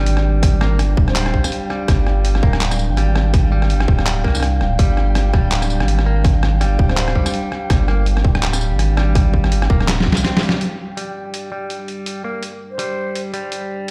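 Half-time drum and bass with a tense, dark mood, heard as if played on a big sound system in a bare room. An overdriven, tight electronic kick and a gritty, pitched-down sampler-style kit with handclaps, hi-hat, rim clicks, snare and tambourine join a thick, saturated sub bass, while a moody, detuned analog pad pumps under sidechain and a twangy, clean electric guitar picks arpeggios through a low-pass filter and digital delay. A faint, flickering granular texture hovers high above, and an airy flute with vibrato drifts in briefly at 1.1, 6.9 and 12.7 seconds.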